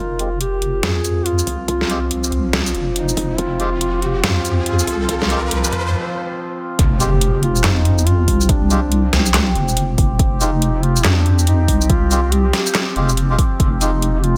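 Meditative and dark, this deep dubstep excerpt in a half-time swing sets a mellow, vibrato-laden duduk melody with scooped notes over a moving-overtone drone, a deep up-front wobble bass, distant reedy melodica stabs under a filter sweep during the build-up, a dubstep kit with metallic hats and a deep snare, and a tape-warm electronic kick that joins at 1.5 s, with a riser and break giving way to the drop and impact at 6.8 s.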